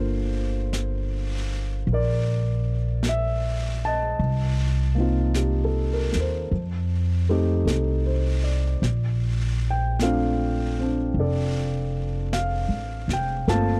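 A woody, pizzicato upright bass sits up front in this intimate, tender jazz ballad fragment, moving slowly at 52 BPM in 4/4 with a swung feel through Gm7, Cm7, F7 and Bbmaj7. A warm, natural grand piano accompanies, its action noise audible. A small-room brush kit of snare and hi-hat with a rolled-off top joins softly in the background at 0.7 seconds, all captured in a dry, close 1970s-style studio sound.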